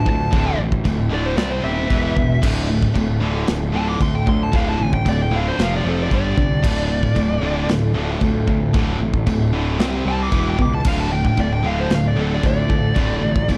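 A straight, relentless 4/4 drive from a punchy modern studio drum kit, with kick, snare, crash and china cymbal entering at 0.1 seconds, anchors this epic heavy metal passage cut from a longer piece, while a growly, fuzz-soaked picked bass sits up front beneath two bright, distorted rhythm guitars churning out riffs in the background. Over them, a dark, high-gain lead guitar plays a soloing melody colored by tape echo throughout. A very quiet chamber string section adds intimate, sul tasto sustained chords with light vibrato, all in a dark, dry production.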